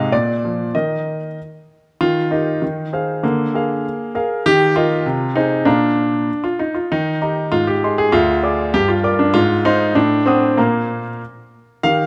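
Graceful and elegant, this short excerpt from a classical-period piano sonatina moves in a straight, poised 2/4. A single baby grand piano carries everything on its own from 0.0 to 12.1 seconds, its tone warm, natural and up front, ranging from D2 up to Eb6. After a brief opening phrase, a longer passage begins at 2.0 seconds and unfolds through a gently shifting progression that touches seventh chords and diminished colours before settling on a bare Bb5 at 10.6 seconds. Close, detailed microphones capture the instrument intimately, while a moderate recital hall reverb adds a soft halo of space around each note.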